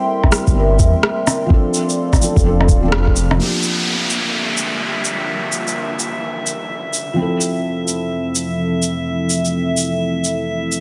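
Swung sixteenths at 127 BPM carry this wistful, ghostly future garage piece in G dorian, where an overdriven, thumpy kick and a rumbling, detuned saw bass drive the opening beneath a soft felt-muted upright piano with 12-bit sampler grit and analog delay and a moody, chorused analog pad that both pump with the beat, before the kick drops out at 3.1 seconds and the bass gives way at 3.4 seconds to a downlifter and a filter sweep on the pad, while a tape-tinged rim click and shaker continue throughout and a glassy, drifting harmonics texture enters at 3.9 seconds.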